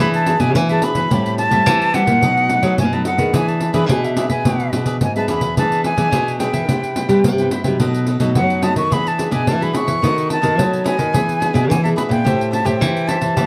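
Nostalgic and bittersweet, this samba and choro passage moves at 108 BPM in a straight 4/4, cut from a longer piece. An airy metal jazz flute carries the melody up front with a soft attack, expressive vibrato and a warm tone. Two fingerpicked nylon-string guitars with fresh strings and audible finger squeak support it: one plays accompaniment and the other the bass line. The accompanying guitar sits up front with a warm, classical tone, while the bass guitar rings bright. A crisp, bright picked cavaquinho adds higher accompaniment. A jingly, compressed, saturated pandeiro played with soft hands joins up front at 0.1 s. The harmony circles around E7, Am7 and B7 with a turn to Cmaj7, all in a dark production with moderate studio reverb.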